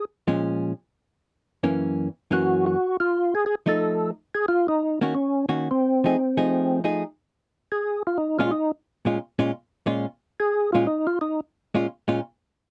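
Jazz in Bb minor, smoky and soulful, swinging at 178 BPM in a dry, close 1970s-style studio sound, where a dark, clean, compressed hollow-body electric guitar picks the accompaniment from 0.3 s and a fat, lightly overdriven tonewheel organ with key click, percussion, chorus vibrato and a slow rotary speaker sounds briefly at the very start, then carries the melody from 2.3 s before taking a solo at 7.2 s in this cut from a longer piece.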